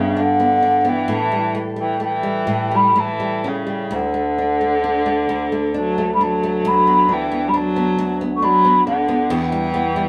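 Pastoral and nostalgic, this short Celtic slow air in 3/4 drifts with a rubato feel, cut from a longer piece. A mellow, hollow baroque flute carries the melody high in its range with woody vibrato and a slightly distant placement, while a single bowed viola, clear and focused, sings a low second line up front. A fingerpicked flamenco guitar supplies the accompaniment with an acoustic glow and audible finger squeaks, the three playing together live in a studio room with moderate reverb as the harmony moves from Gmaj7 through A7 and D to Em.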